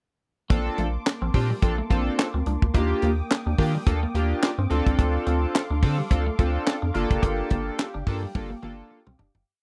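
Early-eighties boogie funk at 107 BPM in Bb major, danceable and feel-good. A tight funk drum kit sets the mid-tempo groove, with a high-tuned snare layered with handclaps, hi-hat, a tight kick and toms. Up front sits a fat, rubbery square-wave bass line, syncopated and dotted with chromatic approach notes, alongside glossy, chorused polysynth stabs in rootless voicings. In the background, a twangy, muted single-note line on clean electric guitar and a brassy, airy analog pad move over a Bbmaj9, Ebmaj7, Dm7 and Gm7 progression. The sound is dry and close, with a fade-out beginning at 7.2 seconds and a drum fill arriving at 8.4 seconds.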